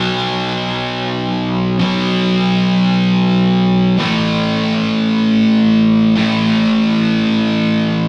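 In free time, this short rock excerpt of about 8 seconds features a lone sludgy distorted electric guitar, overdriven, picked and double-tracked, sitting up front with a confident, sunny mood as it moves from B5 to A5 at 4.0 seconds within a range of A2 to B3. The sound carries a moderate stone-room reverb and the rough, tube-saturated character of a rehearsal-room recording, giving the guitar a gritty, warm weight.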